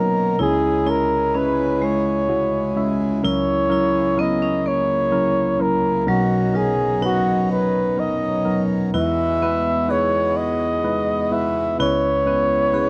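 A breathy flugelhorn carries the melody up front, its mellow, vibrato-laden jazz phrasing rounded off by a smooth top, in this heartbroken, reflective acoustic folk-pop ballad moving slowly at 42 BPM in a straight 6/8, in C# dorian. Beneath it, a worn, slightly out-of-tune tine electric piano sounds clean through a combo amp, while a vibraphone struck with hard mallets, motor off, rings metallic and bright in close-miked arpeggios, and a reedy, breathing hand-pumped harmonium holds sustained chords lower in the mix. Light reverb surrounds this excerpt from a longer piece as the chords pass from C#m through F#7/C#, Bmaj7 and Emaj7 to C#m7 at 11.8 seconds.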